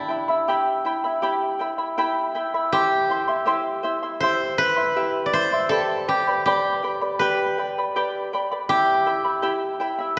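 Andean folk with an earthy, festive mood, this short passage from a longer piece sets a dry, woody koto melody, played with fingerpicks, against fingerpicked charango accompaniment whose double strings and some octave-doubled strings give a mellow, shimmering sound; both instruments sit up front in a reverberant church or concert hall as the harmony moves from Em through C and G and back to Em.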